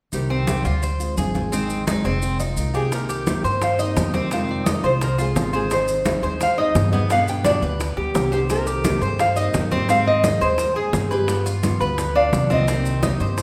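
A brisk 4/4 pulse at 172 BPM, set by woody, thumpy pizzicato upright bass, ringing congas and grainy, saturated maracas, drives this danceable, nostalgic Cuban son and guajira excerpt in C minor, with fingerpicked nylon-string guitar chords underneath and an up-front tres playing metallic, double-string arpeggios from 0.3 seconds. At 2.8 seconds, a full-bodied, fingerpicked nylon-string guitar melody takes the lead, and a moment later, at 2.9 seconds, soft-handed, low-tuned bongos join the background percussion over a minor progression that moves through Cm7, Fm7, Abmaj7 and G7. The whole performance sits in a wet recital-hall reverb that gives it a spacious, church-like glow.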